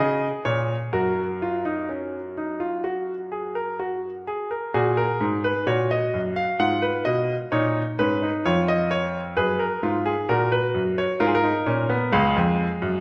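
Classical, baroque-style three-part fugue for solo grand piano in F# major, moving at a contemplative, solemn 65 BPM in a straight 4/4, cut from a longer piece. The clear, present piano sits up front, spanning C#2 to F#5, and its harmony passes from F# through G#m and C#7/E# back to F# before closing on C#, with a second section beginning at 4.7 seconds. A wet recital-hall reverb with a 1.8-second decay surrounds the instrument, and lossy compression artefacts colour the sound.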